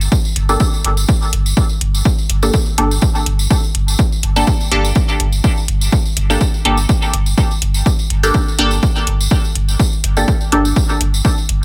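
A deep, clean sine sub bass on G1 pumps under a jingly close tambourine from the start of this nocturnal, meditative dub techno excerpt in G minor at 124 BPM with a light 16th-note swing, as a punchy overdriven kick and metallic, overdriven hi-hats join up front in a large-room sound, and from 0.5 seconds a muted, detuned, resonant chord stab on Gmadd9 plucks through phaser, sidechain pumping and dub echo inside a digital ambience.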